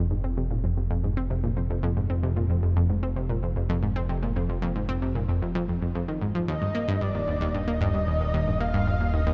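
Ambient, sequencer-driven space music at 113 BPM in a straight 4/4, this short cut from a longer piece feels hypnotic and mysterious. An analog pluck carries the riff throughout, its detuned sawtooth tone bright and round with a fast attack and decaying filter pluck, placed up front and dressed in chorus and analog delay. Beneath it, a fat analog bass holds the low end from the start, thick and nasal, with saturated, detuned sawtooth and square waves sustaining after each plucky onset. At 6.5 seconds a breathy, flute-like synth lead enters with the melody over an Ebadd9 chord, its soft attack, noise layer, sub octave and vibrato set up front and bathed in ensemble chorus, shimmer reverb and analog delay. A huge ambient reverb with an 8.2-second decay surrounds the parts, giving the piece a spacious, drifting sense of distance.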